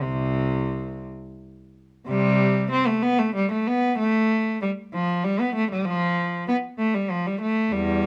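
A lilting six-eight pulse, handled with a flexible, rubato feel, carries this short classical fragment in the manner of a baroque suite movement. A single bowed cello plays alone from start to finish across its 8.1 seconds, ranging from its low register up into the tenor area. Its gut-string sound is reedy and rich, with a period-style character, and it sits up front in the mix. The opening phrase returns at 2.1 seconds, giving the passage a dance-like, radiant lift as the idea is restated. A moderate studio reverb lends the solo line a natural sense of space, and the fragment is cut from a longer piece.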